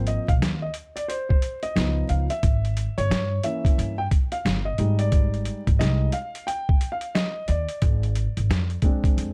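A dark, mellow concert grand piano and a woody upright bass open this smooth jazz-hop excerpt together, with a boom bap sampler-style drum kit joining at 0.1 seconds. The groove sits at 89 BPM in 4/4 with a 62% swing on the sixteenths, in Ab lydian and tuned slightly sharp to A4 = 441 Hz. The piano carries a solo throughout, intimate and vintage in tone with audible action noise and deep bass, moving through rich harmony from a rootless Ab69 to Db9, Gdim7, an open Abmaj7 and finally Fm6 over Ab. Beneath it, the pizzicato steel-string bass sits up front, thumpy and acoustic, holding down the low register. The compressed, pitched-down drums bring a gritty feel with a thumpy kick, a medium-tuned snare and hi-hat, also placed up front. The dry mix has a dark production and a layer of vinyl crackle that gives the whole excerpt its warm character.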